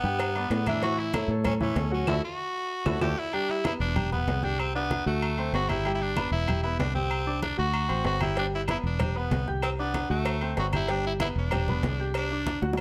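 Moderate studio reverb surrounds this festive, danceable salsa excerpt in G major at 191 BPM, where a raspy, forceful tenor saxophone leads up front over a polished grand piano with audible action noise and a dark, foam-muted fingered electric bass, while background congas, ringing agogo bells and timbales, very quiet woody claves, and soft-handed cowbell and bongos (heard until 3.1 seconds and again from 8.4) fill out the percussion, and a band accent with a drum fill closes the opening section at 3.3 seconds.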